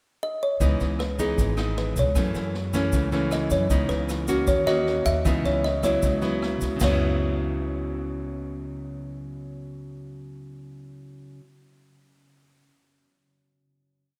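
This is a short, complete bossa nova piece in C# minor at 154 BPM in a straight 4/4, tuned slightly sharp to A4 = 444 Hz, with an intimate, melancholic mood. A woody kalimba opens with a brief pickup, playing short thumb-plucked motifs in sentence-like phrases. At 0.6 seconds the rest of the band joins. An up-front, full-bodied nylon-string guitar fingerpicks thumb bass and syncopated plucked chords, and a thumpy gut-string upright bass plays a dotted root-and-fifth line. Underneath, an acoustic drum kit with a punchy kick and medium-tuned snare plays a bossa brush groove, while a grainy, bright tube shaker sits in the background. The harmony moves from C#m9 through F#m7 and D#m7 before settling on C#m7. The drums and shaker drop out at 6.9 seconds, leaving the kalimba, guitar and bass to ring out on a final chord. A moderate cathedral reverb places the music in a vast, echoing space.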